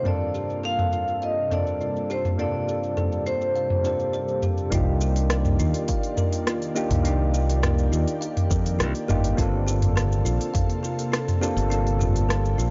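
A dry, gritty cassette-tape sound with transformer saturation and light reverb frames this wistful, relaxed sunset chillout excerpt in G minor at 103 BPM, where a ringing metallic vibraphone carries the melody until 4.4 seconds over soft, round electric-piano-like synth keys, an ethereal airy pad in the background, and a woody, hollow kalimba plucking arpeggios, all on Gm11 and Cm11 chords, while an up-front deep house kit of smooth hi-hats, rim click, shaker and toms plays throughout, joined at 4.7 seconds by a bright, punchy fingered electric bass and a punchy electronic kick that drops out at 10.7 seconds.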